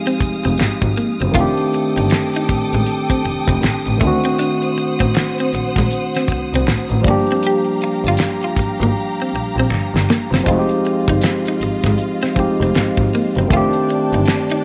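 Sultry and soulful, this neo-soul R&B excerpt sways at 79 BPM with a swung sixteenth feel. An up-front, barky tine electric piano with light overdrive through a combo amp comps alongside lush, smooth bowed strings and a bowed double bass with a bright, focused vibrato tone. A dry, damped 70s drum kit with a fat snare and tight kick adds a fill at 8.9 seconds, while a slightly broken-up picked electric guitar with tremolo and a distant egg shaker with finger snaps sit in the background, set in light reverb as the chords move from Fm7 through D7b9 and Gm7.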